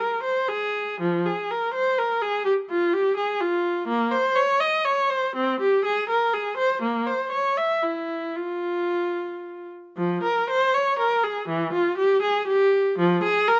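Classical, baroque-style suite movement for unaccompanied viola: a grave, introspective excerpt in a rubato 6/8 at roughly 70-85 BPM in dotted quarters, beginning in Ab major and turning to F minor from 3.9 s. A single bowed viola, clear and focused with vibrato, sits up front and ranges from E3 to E5, with a new section arriving at 10.0 s. Light reverb surrounds the instrument.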